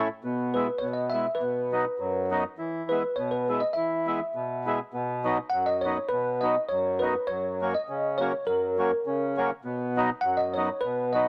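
A bell-like tine electric piano carries the melody in this festive, bouncy alpine folk passage, its bright, clean tone sitting up front with a touch of analog chorus. It enters at 0.5 s over a mellow accordion that begins at 0.0 s, the accordion supplying a reedy, full accompaniment spanning F#2 to E4. The tempo is 102 BPM in 2/4, with a light swing on the eighths. The harmony begins in E major and moves to B major at 4.9 s, where a new section begins and the chords pass through B and F# before returning to B. Light reverb frames a dry, gritty recording, and the passage is cut from a longer piece.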